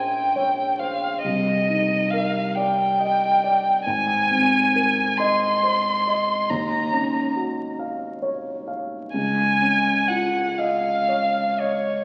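Heard through the crackle of a very old 78 rpm record and a wet concert hall reverb, this brief classical fragment is an impressionist duo for violin and grand piano, mysterious and wistful in mood, moving in a slow, rubato 6/8 at 46 BPM and settling into Eb dorian from 3.9 s. A rich, up-front violin carries the melody in its upper register with vibrato and expressive portamento. A dark, mellow concert grand plays the accompaniment with deep bass through lush chords such as Bbmadd9, Cm9 and Ebm9.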